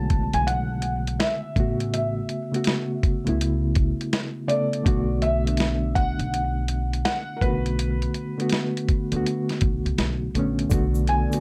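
Reflective and melancholic, this lo-fi hip hop excerpt moves at 82 BPM in 4/4 with a swung sixteenth-note feel, set in B dorian over chords shifting from Bm7 to A69 and back. A felt-muted upright piano carries the melody in a soft, intimate voice with short sustain and audible action noise, softened further by plate reverb and analog delay. Beneath it, a reedy electric piano plays accompaniment up front, its fast tremolo and cassette tape coloring giving the chords a shimmer, while a pizzicato upright bass adds a woody, thumpy low end. A dusty, sampler-style drum kit sits up front with a gritty, compressed sound, pairing a thumpy kick with a medium-tuned snare and hi-hat. Near the close, a grainy egg shaker enters at 10.7 seconds, and a warbling, nostalgic pad with chorus drifts in quietly at 10.9 seconds, all inside a modest small-room ambience.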